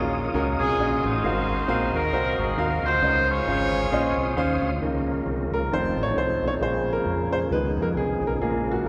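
A warm, distant horn section carries the melody over clear, woody upright piano, a smooth tonewheel organ with fast rotary speaker and chorus vibrato, and a round, dark fingered electric bass in this uplifting, reverent gospel excerpt at 134 BPM with a swung feel in Db major, where the horns stop at 4.6 seconds and the piano takes a solo from 4.8 seconds, all bathed in a wet cathedral reverb.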